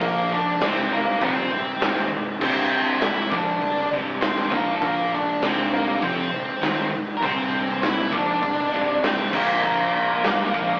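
A rough rehearsal-room recording with an AM radio sound frames this restless, anthemic stretch of quiet-loud alternative rock, cut from a longer piece. Up front, a dark, distorted octave-fuzz lead guitar carries the melody over an overdriven, double-tracked semi-hollow guitar riff bathed in spring reverb, and a gritty, saturated garage drum kit with a punchy kick and a rolled-off top. A bright, twangy twelve-string electric adds very quiet arpeggios only until 2.4 s, while a growly fuzz fingered bass sits in the background.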